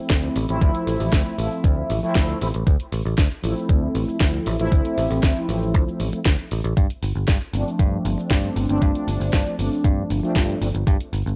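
Nu-disco at 117 BPM in D minor, sensual and cosmic, this short excerpt sets a mellow, round synth brass with chorus, phaser, tape echo and a filter sweep over a growly, punchy picked electric bass with tube saturation, a thumpy, overdriven, sampler-style kick re-recorded in a small room, and a house kit of cracking snare, bright hats and cabasa carrying the same drive, moving from Dm7 to G9sus4 at 6.8 seconds in a dry, gritty hardware sound.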